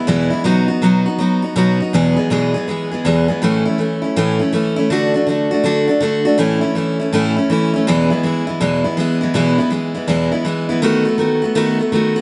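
A picked steel-string acoustic guitar plays alone from the start, its bright, full-bodied dreadnought tone sitting up front in this heartfelt, easygoing country passage cut from a longer piece. The playing carries a relaxed swung feel, and a new section begins at 3.4 seconds before the guitar's last chord at 10.8 seconds. A moderate plate reverb adds a lingering tail, and the overall production is dark and warm.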